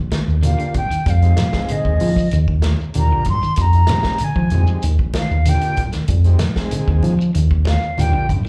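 This sounds like a live club gig heard through the venue's PA, with a light touch of club reverb, in a short cut from a longer afrobeat piece. A deep, round analog bass sits up front and anchors the driving groove, while a vintage drum kit with a punchy kick, a medium-tuned snare, hi-hat and a rolled-off top keeps a straight 4/4 pulse. Low-tuned congas struck with hard hands and a grainy, mellow shekere stay in the background, alongside a clean, picked electric guitar playing arpeggios through spring reverb. An overdriven, reedy combo organ with a heavy wobble and slapback echo supplies the accompaniment. Over the top, an airy, distant concert flute solos throughout with vibrato, tongued notes and expressive phrasing, also carried by slapback echo, as the harmony sways hypnotically between Ebmaj9 and Fm7.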